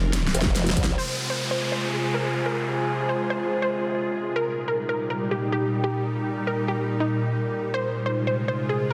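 An evolving, detuned wavetable pad holds F minor chords in a lush hall, while a drum fill with a huge snare, metallic low-passed hats and crash cymbal, a punchy electronic kick and an overdriven formant-sweep wobble bass hit briefly in the opening second of this heavy, aggressive half-time dubstep excerpt at 142 BPM. From 1.0 s a detuned sawtooth unison pluck carries the melody with 12-bit sampler grit and tape echo over a descending downlifter, and at 1.5 s a dark, warbling, lo-fi tape-like pad joins, also pumping with sidechain. The harmony moves from Fm to Eb at 4.4 s and back to Fm, all within a dense, heavily limited master.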